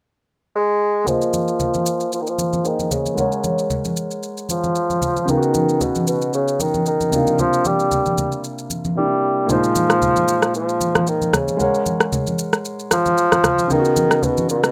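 Deep and hypnotic, this amapiano passage cut from a longer piece opens with a solo classical-style bassoon, distant yet up front, with a soft attack, light vibrato and analog delay, joined at 1.0 seconds by a dark, boxy grand piano with audible action noise and long sustain, then by a produced electronic shaker and rim click and low-tuned, thick-skinned congas played with soft hands, over ninth suspended chords, a filter sweep and a brief silent gap at 9.0 seconds in a rough home-demo mix with light reverb.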